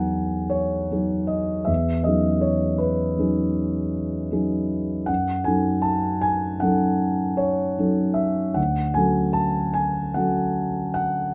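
Mysterious and nocturnal, this short excerpt of impressionist classical music for solo piano drifts in a slow 9/8 at 52 beats per minute, counted in dotted quarters, with a free, rubato feel. A concert grand piano carries everything alone from 0.0 to 11.3 seconds, ranging from D2 up to A#5, its tone warm with a deep bass and placed up front. Set in C# minor, the harmony moves from Emaj9 to C#m11/E, then to F#m6 at 5.1 seconds and Dmaj7 at 8.6 seconds, giving the passage a hazy, shifting color. Close, detailed microphones capture the instrument's texture, while a light reverb lends a touch of space. The recording is cut from a longer piece, so it feels like a glimpse into an unfolding night scene.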